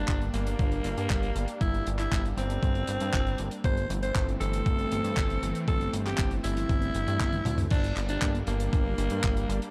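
A raspy, gritty alto saxophone carries the melody with bright vibrato over a thick, detuned unison pad treated with chorus and phaser, in this nostalgic, melodramatic italo disco fragment cut from a longer piece. A glossy, nasal synth bass sits up front beside a thumpy, sampler-style electronic kick and a dry, damped 70s kit of hi-hat, handclaps, toms and dark crash cymbals, with a drum fill at 7.3 seconds leading into a new section at 7.7 seconds. The saxophone's digital delay and the studio reverb lend the production a dark, warm sheen as the chords move from Gm to Am/G and back.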